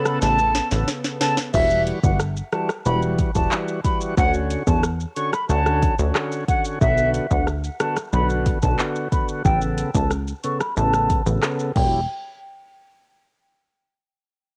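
Tough and hypnotic, this dancehall excerpt moves at 91 BPM in a straight 4/4, centered on E dorian, with a cassette-recorded home feel, light reverb and digital ambience. A hollow, airy concert flute carries the melody up close, with vibrato and a crisp attack, its tone darkened by a low-pass filter. Beneath it, a full, thick tonewheel organ supplies lightly overdriven accompaniment with key click and a slow rotary speaker, pumping against the sidechain. A smooth, warbling analog pad with detuned sawtooth character and subtle chorus sits in the background only until 1.5 seconds, when a filter sweep begins and runs to 12.1 seconds. The electronic afro-pop drum kit is up front, opening with a fill, and pairs a deep kick and sharp snare with metallic hi-hats, rim clicks, handclaps, shaker and crash, while a punchy, funky, wave-folded bass plucks from E1 to E2 with a fast, decaying attack. 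The chords cycle through Aadd9, Emadd9, Dmaj7 and Bm before the parts drop out at 12.1 seconds.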